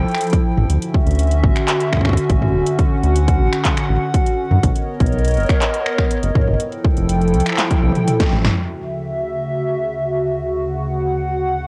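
A hollow, airy pad with a flute-like, ring-modulated tone and a round, deep analog bass with tube saturation open this glitchy, wistful IDM piece, soon joined by a heavy, tape-colored electronic kick and an analog drum machine of finger snaps, handclaps, metallic hi-hats, toms and a punchy snare in a short room, all set in light reverb with the lo-fi character of a home cassette recording, until a drum fill at 7.6 seconds gives way to the chorused pad sustaining alone from 8.5 seconds.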